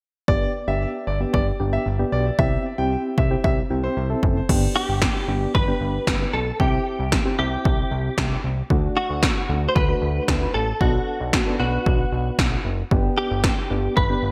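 Synth-pop at 114 BPM in G major, wistful and bright, this excerpt opens with punchy 80s electronic pad drums with a gated snare, a fat sawtooth analog bass, and soft, round electric-piano-like synth keys carrying chorus, tremolo and a filter sweep, while a clear concert grand piano adds a second line through digital delay until 4.1 seconds. From 4.8 seconds a clean, compressed, direct-recorded electric guitar takes the melody with ensemble chorus over chords moving from G through C, D and Bm7 back to G. A lush hall reverb and bright 1980s-style digital production frame the mix.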